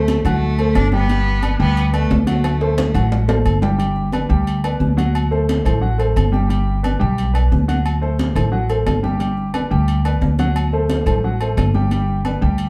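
A brisk, straight salsa groove at 178 BPM in 4/4 drives this joyful, danceable Latin clip in G major. Thumpy pizzicato upright bass sits up front with a dark, woody tone, while bright, high-tuned congas played with soft hands sit in the background, and ringing agogo bells and timbales sound close and dry. A warm grand piano carries the accompaniment up front. A single bowed cello opens with a smooth, clear melody with vibrato, heard from a distance, before dropping out at 3.3 seconds. A drum fill from 2.4 to 3.8 seconds leads into a new section where the harmony settles into a steady back-and-forth between D7 and G, all in a small, reverberant room heard from further back.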